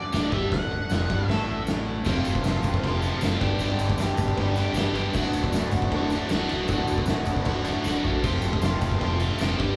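A dark, fuzzed octave lead guitar and a buzzy, very quiet combo organ open this swaggering, raw garage rock excerpt at 155 BPM, before a picked, double-tracked overdriven guitar riff with phaser, a growling overdriven fingered bass, a jingly background tambourine and an oversized, gritty low-tuned drum kit with a fat snare crash in together as a band playing live in one large room, moving through D, F and G chords with a drum fill at 7.9 seconds.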